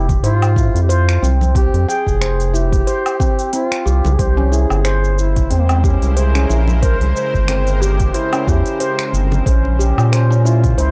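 A mellow duduk with scooped notes and vibrato opens this hypnotic, meditative organic downtempo piece over ringing nitrided-steel handpan arpeggios, both touched with analog delay, while a round, up-front analog bass with tube saturation and sidechain pumping sits under a deep, overdriven electronic kick, a tape-warm electronic kit of smooth hi-hat, cabasa, finger snaps and woodblock on a swung 16th feel, and very quiet, close congas and bongos, until a tense, string-like sawtooth drone with vibrato and its own reverb enters at 5.2 s, the whole recording dry and gritty.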